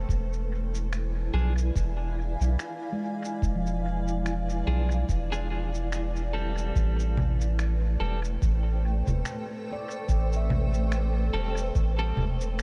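A round, deep dub sub bass sits up front in this meditative ambient dub excerpt, its soft, sustained tones anchoring a slow, lightly swung groove. Beneath it, a granular cloud pad holds blurred, evolving chords with a detuned, mellow haze, its own reverb and a subtle chorus. A muffled, thumpy electronic kick stays in the background, joined by compressed, pitched-down shaker, finger snaps and congas trailing dub echo. A clean, scooped electric guitar adds picked stabs with tremolo and dub echo, and a dark, ringing steel handpan enters at 2.9 seconds with arpeggios through tape echo, shaped by a filter sweep until the harmony moves from E7b9 to Am7 at 6.8 seconds. The whole excerpt sits in light reverb with a deep, unhurried feel.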